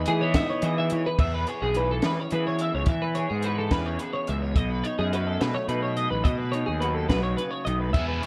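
A wistful, intricate math rock and midwest emo excerpt in E major opens on a clean, compressed twelve-string electric guitar playing arpeggios up front through lush chorus. Alongside it play a slightly broken-up, lo-fi guitar through a small old amp, also chorused, a growly fuzz-overdriven picked bass, and a compact cocktail drum kit with a high-tuned snare, punchy kick, hi-hat and crash. At 71 BPM in 6/8, the harmony moves from Emaj7 to E6 at 1.2 seconds and later to B7, until a bright, double-tracked crunchy overdriven guitar riff enters at 7.9 seconds, all set in a dark production with light reverb and smooth, small-room drums with a rolled-off top.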